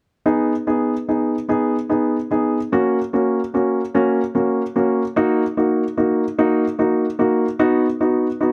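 A warm upright piano opens at 0.3 seconds, playing a romantic, heartfelt accompaniment in a slow 6/8 pop feel at 49 BPM, moving through G#m, F#, D#m and B. Its woody, intimate tone sits up front with audible action noise and light reverb, staying in a compact middle range until it ends at 8.5 seconds in this short excerpt cut from a longer piece.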